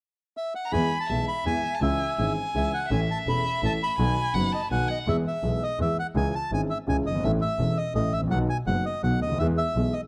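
Playful and nostalgic, this short rubato tango in three-time, cut from a longer piece, sets a reedy, dark bandoneon melody up front over a warm, present baby grand piano accompaniment and a clear, distant bowed double bass with vibrato, while a rich, expressive bowed violin with portamento adds a second line until 5.1 s, all over a repeating E, C#m, A, B progression in a dry, close 1970s-style studio sound with light small-room reverb.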